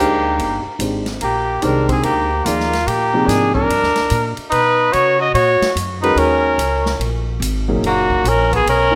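Open and hypnotic, this swung modal jazz fragment sets a breathy, up-front trumpet melody with vibrato over a distant, roomy tenor saxophone second line with scooped notes, a warm grand piano whose action noise is audible, and a woody pizzicato upright bass, while a swinging big-band drum kit with a punchy kick enters at 0.4 s, all moving from Ebmaj9 to Bmaj9 at 4.5 s in a rough home demo mix with small room ambience.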